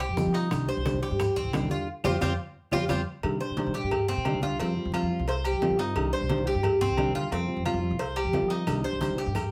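A straight 4/4 pulse at 176 BPM carries this nostalgic, warm passage of Cuban son and guajira in C minor, where an up-front, metallic Cuban tres plays double-string arpeggios over a thumpy pizzicato upright bass and a dark, thumb-plucked nylon-string guitar with audible finger squeak, while background percussion (woody claves in a distant large room, low-tuned congas under soft hands, tight saturated bongos and cowbell, ringing close-miked timbales and agogo bells, and grainy maracas that drop out after 3.0 s and return at 8.7 s) sits in light reverb, with a band accent arriving around 1.9 s and a drum fill joining at 2.2 s as Fsus2 and Cmadd9 alternate.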